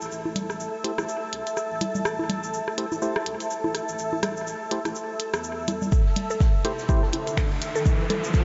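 Hypnotic and sparse, this short minimal techno excerpt in A minor moves at 124 BPM with a swung 16th feel, resting on an Am7 chord as a cloudy, blurred granular pad with pumping sidechain floats over a thick, saturated sub bass, a clicky minimal drum kit, tape-warm electronic bongos, congas and rim click with analog delay, and hollow, dark organ stabs treated with chorus and delay. At 5.9 seconds the sub bass stops and a build-up begins: a deep, up-front electronic kick arrives alongside a faint open jazz kit with dark cymbals and a high-tuned snare, a woody, round mallet-like pluck with chorus, phaser and tape echo sits in the background under a filter sweep, and a riser enters at 6.6 seconds. The whole mix is dreamy and soaked in a huge ambient reverb, with its top end kept soft and dim.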